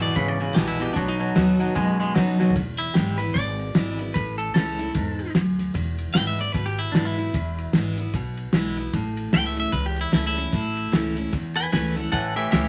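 Wrapped in wet studio reverb and vinyl crackle, this rowdy, upbeat rockabilly excerpt swings along with a bright, compressed clean electric guitar soloing from 2.6 s over a full-bodied picked steel-string acoustic guitar, a woody, growly pizzicato upright bass and a cloth-damped, thuddy drum kit with a fat snare and dark cymbals that plays a fill at 2.4 s, while an up-front twangy electric guitar riff sounds only at the opening and returns at 12.1 s.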